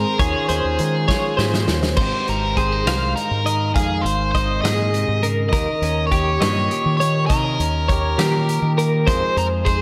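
A steady, straight 6/8 pulse at 68 dotted-quarter beats per minute drives this bright, intricate slice of math rock and midwest emo in Ab major, cut from a longer piece. A growling, overdriven fingered bass anchors the low end with punchy weight, while a clean electric guitar with spring reverb and slapback echo fills in the accompaniment. Above it, a chiming twelve-string electric guitar spins compressed arpeggios through tremolo, slapback and tape echo, and a biting overdriven guitar sits up front carrying the melody between Ab4 and Eb5. A loose indie drum kit with dark cymbals and a punchy kick enters at 0.2 seconds and plays a fill from 1.1 to 2.0 seconds before the music settles onto Abmaj7, moving later through Eb7 and closing on Fm7. A lush hall reverb and a bit of small-room air give the mix a big arena sound.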